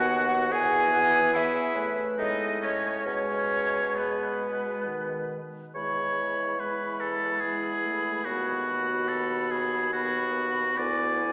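In a gentle 3/4 that breathes with rubato at roughly 66-75 BPM, this short, serene fragment from a slow romantic movement for wind quintet unfolds in E major with a tender, unhurried grace. A pure, distant silver flute carries the melody, while a clear oboe sits up front with a second line just beneath it. A mellow clarinet hovers in the roomy background as accompaniment, joined by a close-miked French horn whose warmth anchors the middle of the texture, and both flute and horn sing with vibrato. The bassoon supplies a soft, rounded bass line. All five players sound together from start to finish, and the harmony drifts through colours such as Amaj7 and G#madd11/B before a new phrase settles onto E at 5.7 seconds and closes on E7/D at 10.8 seconds. A lush concert-hall reverb bathes the ensemble, though the overall sound has the slightly boxed quality of a small speaker.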